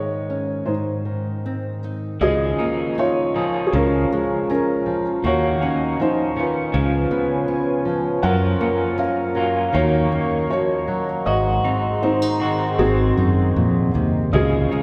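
A long, wet church reverb surrounds this tender, hopeful acoustic folk-pop ballad in Db major at 79 BPM, taken from a longer piece. A felt-muted upright piano carries the melody with a boxy, intimate tone and audible action noise, over fingerpicked nylon-string guitar sitting up front. At 2.2 seconds a direct-sounding fingered electric bass enters, along with a slightly broken-up, lo-fi electric guitar playing arpeggios with tremolo through a small old amp and a detuned, moody analog pad holding sustained chords with chorus.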